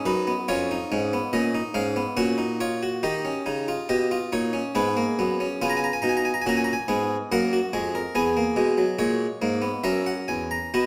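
A close, up-front Flemish-style harpsichord with a round, full, plucked tone plays alone in this serious, solemn fragment of a baroque-style four-part fugue in F# major, moving at a measured 71 BPM in 3/4 across a span from E2 to A#5, its harmony passing through D#7, G#m and C#7 before settling briefly on F# and reaching F#7 near 9.9 seconds, all set in the lingering reverb of a recital hall.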